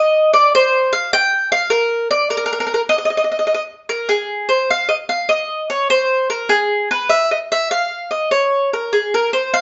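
A round, up-front acoustic mandolin, warm and picked on double strings, carries this lively, romantic Italian folk passage alone from 0.0 to 9.6 s in a rubato 6/8 at 100 BPM in Eb major, moving into a new section at 4.1 s within a moderate room reverb and a mellow, soft-topped live recording that is cut from a longer piece.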